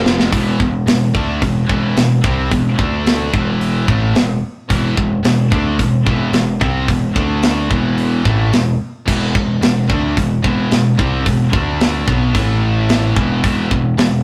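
Heavy metal in E phrygian at 110 BPM, this epic, aggressive excerpt opens with a short drum fill as three picked electric guitars drive the riff together from the start through to 14.2 s: a bright, scooped high-gain part, a distorted high-gain part sitting in the background, and a very quiet, double-tracked crunchy overdriven layer. Underneath, a growling, round picked bass with overdrive holds the low end while an up-front, mid-forward acoustic kit with a tight kick, medium-tuned snare, hi-hat, crash and rolled-off top keeps a straight 4/4 pulse. The harmony circles Em and D5 before a closing run through B5, A5 and E5, all captured in a rough rehearsal-room sound with a small room's reverb and warm saturation.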